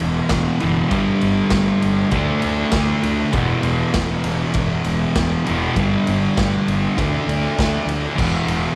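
Swaggering and gritty, this short garage rock cut from a longer piece struts along at 99 BPM in a straight 4/4, centred on E minor. A distorted, double-tracked fuzz guitar sits up front with its picked riff, cycling through E5, G5 and D5 power chords across the full 8.8 seconds. Beneath it, a fingered electric bass adds dark, round, overdriven fuzz low in the range. The raw garage drum kit is punchy and saturated, with a medium-tuned snare, kick, crash and ride heard in a bright stone room that pumps, its top rolled off. A moderate echo-chamber reverb with a 1.8-second tail and small-room ambience gives the band a close, live-in-the-garage feel.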